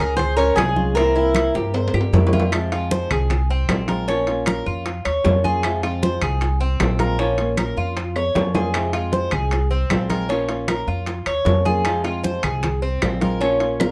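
Cuban son with a guajira flavour, nostalgic and danceable, this excerpt opens with a brief up-front metallic tres melody over a second tres picking arpeggios, fingerpicked flamenco guitar, a growly, thumpy pizzicato upright bass, hard-hand congas with a thick skin, compressed, saturated bongos in the background, ringing timbales, and woody claves, with drum fills at 1.6 and 8.2 seconds as the chords settle into a rocking Fm–Bbm alternation.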